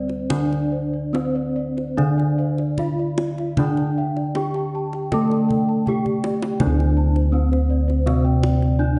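A resonant recital-hall reverb surrounds this serene, shimmering nine-second fragment of Javanese gamelan, and its top end is softly rolled off. The melody rings out up front on a bronze metallophone struck with wooden mallets, its paired tuning producing shimmering beats. Beneath it, a lower metallophone plays a ringing accompaniment. A set of bright, airy bossed gongs and a mellow, padded metallophone share high arpeggios, the metallophone sitting in the background. Deep bossed gongs played with soft beaters carry a round, beating bass line. A tight, close and dry kendang, played with hard hands, keeps time from 0.1 seconds and plays a drum fill from 5.9 to 6.6 seconds into a new section.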